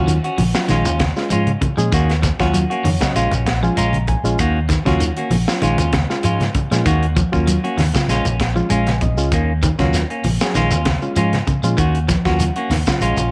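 Intense and defiant, this afrobeat excerpt moves at 97 BPM in Eb minor with a light sixteenth-note swing, circling between Ebm7 and Bbm7 over a round, amped fingered bass and a tight funk kit with a high-tuned snare, backed by a grainy shekere and bright, damped congas sitting in the background. Two clean picked electric guitars share the groove, one playing background arpeggios and the other playing stabs through tape echo. A reedy, barky electric piano heard through its built-in speakers comps throughout and breaks into fills at 2.5 and 8.4 seconds, all set in a moderate spring reverb.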